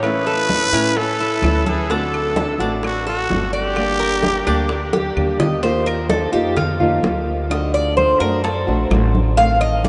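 A raspy, growling trumpet leads up front over picked, metallic Cuban tres arpeggios, dark fingerpicked nylon-string guitar, thumpy gut-string upright bass, ringing congas, tight high-tuned bongos and woody claves in this sultry, danceable 128 BPM Cuban son and guajira cut from a longer piece, where a drum fill at 4.9 seconds hands off to a tres solo from 5.6 seconds, all bathed in a huge, echoing reverb.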